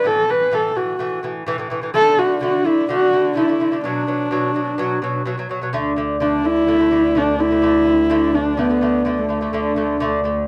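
This Mongolian folk piece is a short cut from a longer performance, with a galloping, proud mood at 126 BPM in a straight 4/4, set in a D gong mode and tuned slightly low to A4 = 438 Hz. A horsehead fiddle, played by one bowed player on horsehair strings, carries the melody up front with a dark, husky, woody tone, light vibrato and sliding portamento. Beneath it, an acoustic lute with nylon double strings, some doubled at the octave, supplies delicate fingerpicked arpeggios from the start. At 5.7 seconds a bowed double bass joins on a low D drone, its gut-string, period-style sound coming across as rich, nasal, reedy and boxy. The harmony moves through A5, D5, B5 and back to D5, and the close, dry recording with light reverb has the feel of a 1970s studio session.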